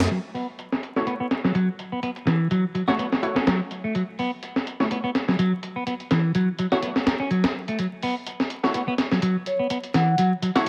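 Funky and gritty, this breakbeat excerpt rides a swung sixteenth-note groove over a single F#m7 chord. A clean, hollow-bodied semi-hollow electric guitar plays the riff up front from the start, softened by a low-pass filter and delay, with a filter sweep running across its whole span. Beside it, a sampler-style drum kit of hi-hat and snare sounds compressed, pitched up and tape-warm, re-recorded in a small room, with low-pass filtering on the hats, kick, snare and room. From 1.0 seconds a bold, punchy orchestra-hit-like synth stab punctuates the groove, its layered, detuned sawtooth body and noise layer snapping in with a fast attack and decaying into its own reverb and delay. At 9.5 seconds a soft-mallet vibraphone slips in with a brief mellow, ringing melody, squeezed through a telephone-like, boxy tone with 12-bit sampler grit and delay. Vinyl crackle, light reverb and a digital ambience sit over the whole recording.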